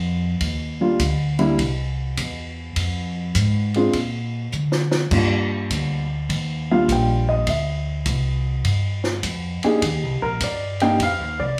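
A lightly reverberant studio sound frames this relaxed, sophisticated jazz piano trio excerpt in Eb major at 102 BPM with a swung 4/4 feel, where a dark, mellow upright piano with audible action noise carries the melody up front over a woody pizzicato upright bass, while a compact cocktail kit with dark cymbals, a high-tuned snare and a punchy kick plays a fill from 4.5 to 5.1 seconds before the piano takes a solo from 5.1 seconds over chords moving from Ebmaj7 to Cm7.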